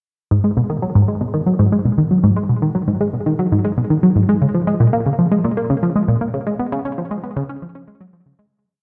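Mysterious and hypnotic, this short ambient piece is carried by a single tight sequenced synth that plays alone from 0.3 to 8.5 seconds, its detuned sawtooth and triangle tones shaped into a mellow filter pluck that sits up front. The synth repeats a 5-step loop that drifts against the bar, coloured by chorus, phaser, delay and a vintage 12-bit sampler grit, all bathed in the wet reverb of a concert hall. A fade-out begins at 5.8 seconds and carries the piece to its close.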